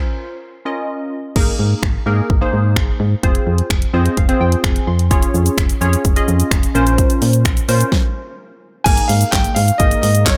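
A straight 4/4 pulse at 128 BPM drives this upbeat, carefree dance-pop excerpt in Ab major, with a punchy, up-front pop drum kit arriving at 1.4 s that layers kick, fat snare, hi-hat, shaker, handclaps, finger snaps and crash cymbal. A solid FM bass enters with the drums, round and dark with a fast attack, its notes pumping from sidechain compression beneath the beat. Glassy digital keys run throughout, detuned and wave-folded with a filter sweep and a chorus shimmer, adding a synth keys fill around 3.7 s before the arrangement stops briefly from 7.9 to 8.9 s. A clear, polished baby grand piano carries the melody with delay, heard only at the opening and again from 8.8 s as the final section arrives. The harmony moves through Bbmadd9, Absus2, Fm and Db/F, and a moderate plate reverb leaves the whole mix dreamy and soaked in space.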